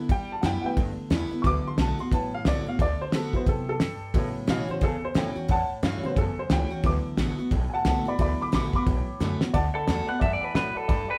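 Upbeat and rollicking, this short rockabilly cut from a longer piece swings at 178 BPM in D major, played live in one room with a moderate studio ambience. A woody, slightly detuned upright piano sits up front and takes a solo from the start, backed by a picked steel-string acoustic guitar with fresh strings and audible finger squeak. Underneath, a pizzicato upright bass with gut strings gives a thumpy low end, while a cloth-damped drum kit keeps a dry, dark pulse on hi-hat, fat snare and tight kick. A drum fill at 9.2 seconds leads into a new section at 9.5 seconds, where an electric guitar through a small old amp enters at 9.8 seconds with a twangy, slightly broken-up, lo-fi melody coloured by spring reverb. The harmony moves through G6, D6 and A6 chords, giving the sixth-flavoured sound typical of the style.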